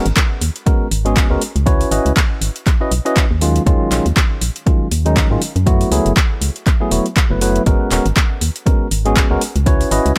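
Late-night and smooth, this deep house excerpt at 120 BPM in G# minor swings its 16ths over a minor-eleventh progression moving from G#m11 through C#m11, D#m11 and F#m11, with a bright, up-front tine electric piano playing stabs coated in vintage 12-bit sampler grit, sidechain pumping and digital delay, a hollow, organ-like FM bass with a fast attack and dark decay pumping underneath, an overdriven deep kick drum sitting up front, and an overdriven drum kit adding handclaps and metallic hi-hats, all in a dry sound.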